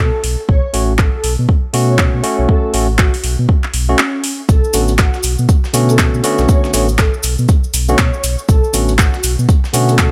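Moody and smooth, this deep house excerpt with a swung groove pairs a breathy, warbling flute-like synth lead carrying the melody through ensemble chorus and tape echo with a deep sine sub bass with octave pumping under tube saturation, an up-front electronic kick and a house kit of handclaps and metallic hats entering by 0.5 seconds, and barky, bell-like tine electric piano stabs through a combo amp, before a gritty, compressed breakbeat sampler kit with filtered hats and snare and a grainy cabasa join in the background at 4.5 seconds as the harmony moves from F#m to Bm9.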